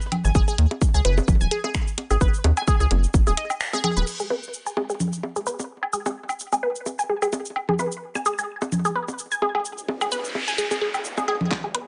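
This quirky, hypnotic minimal techno cut opens on a house drum kit of hi-hat, shaker, handclaps, finger snaps and crash cymbal, filtered thin and sitting back in the mix, at 129 BPM in G# minor with a swung sixteenth feel. Electronic congas, woodblock and bongos come up front with digital delay, alongside a juicy, squelchy resonant blip pluck riff between G#4 and G#5, bright and phased, with cassette-tape colour, delay and sidechain pumping. Beneath them a rubbery, hollow square-wave bass and a punchy electronic kick, re-recorded in a small room, carry the opening, with a band accent at 3.6 seconds as the kick drops out. From 4.1 seconds the bass is gone and the riff rides a filter sweep over the percussion and kit. A noise sweep and riser build toward the close, where a drum fill, a brief kick hit and a faint bubbling stepped-filter texture appear, all under light reverb with a rolled-off top end.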